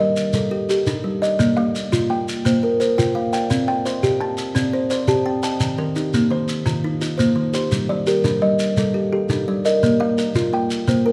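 A straight 12/8 pulse at 114 BPM drives this rippling, traditional mbira-style interlocking cycle in Bb major, cut from a longer piece, where an up-front kalimba with a woody thumbnail pluck and a short, band-limited vintage tone plays arpeggios beside a softer, mellow second kalimba whose fingertip-plucked, hollow-box notes ring on, while a grainy shekere joins at 0.2 s, inside a moderate recital-hall reverb as the chords move through Gm, Bb, Cm and Eb.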